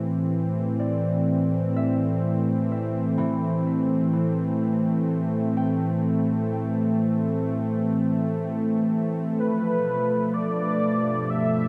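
A dreamy, reverb-soaked ambient excerpt at 63 BPM, peaceful and serene, where a detuned analog pad holds mellow Am7 chords up front over a dark, wave-folded rumbling drone, a thumb-plucked concert harp rings out background arpeggios through tape echo from 0.8 to 9.3 seconds, and a velvety unison synth lead with vibrato enters at 9.4 seconds as the harmony shifts to G9.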